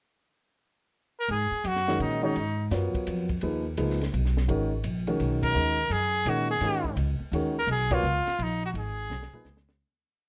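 Searching and intense, this short modal jazz piece swings in 3/4 at 169 BPM, centered on G# dorian and resting on a single G#m11 chord after an opening pickup bar. A clear, vintage-toned trumpet carries the melody up front with vibrato, stating a brief motif-based call phrase at 1.2 seconds and returning at 5.4 seconds in a jazz solo style. Beneath it, a woody pizzicato upright bass walks steadily, while a compact cocktail drum kit, dry with dark cymbals, a high-tuned snare and a punchy kick, keeps a stick pattern on the ride. An upright piano with audible action noise and long sustain adds syncopated comping in quartal voicings from 1.9 seconds. The band hits accents together at 5.4 and 7.9 seconds, and the music fades out as a drum fill closes it, all set in a moderate club reverb.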